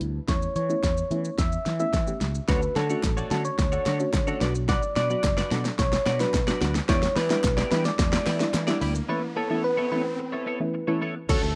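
A straight 4/4 pulse at 109 BPM drives this carefree, upbeat dance-pop build-up, where a punchy, up-front electronic drum kit with a fat snare and a growly, sidechain-pumped fretless bass support a dark, round chorused pluck and a gentle, keys-like struck synth lead with delay and vibrato. A bright, twangy twelve-string electric guitar riff enters at 2.5 s, while crisp background handclaps and a very quiet riser and downlifter add lift over the Aadd9/E, Dmaj7, Bm and Em7 changes, until a fat, mellow, detuned analog lead with phaser appears at 11.3 s, all in a rough, dry home-demo mix.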